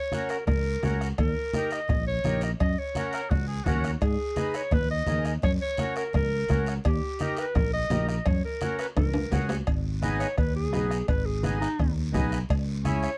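Danceable, passionate cumbia in a straight 4/4, this short cut from a longer piece has the dry, close feel of a 1970s studio session in a small room. A clear clarinet with a soft attack and smooth top carries the melody up front in a classical style, while a reedy, airy accordion fills in the accompaniment. A round, punchy fingered electric bass sits dark and prominent from 0.5 seconds, anchored by a soft-beater bombo, low-tuned congas in the background, ringing metal-shell cowbell and timbales, and a raspy guiro that sounds distant, as if in a larger space. A warm oboe adds a brief second line just past 3 seconds. After a drum fill, the clarinet takes a solo from 9.7 seconds as the harmony settles into a minor key for the closing stretch.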